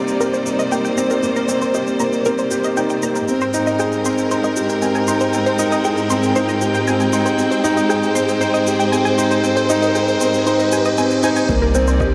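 Opening on a mellow, felt-muted upright piano riff with delay over up-front, bowed chamber strings holding sidechain-pumped chords, this intimate, cinematic piano-and-strings electronica piece at 117 BPM moves from Cm7 to Abmaj7 as an overdriven, room-recorded shaker, a lush, detuned sawtooth pluck arpeggiating with delay and pumping, and a background riser from 2.8 s build through huge ambient reverb and faint mains hum, until a punchy electronic kick and a round, deep analog bass land on Cm7 at 11.5 s.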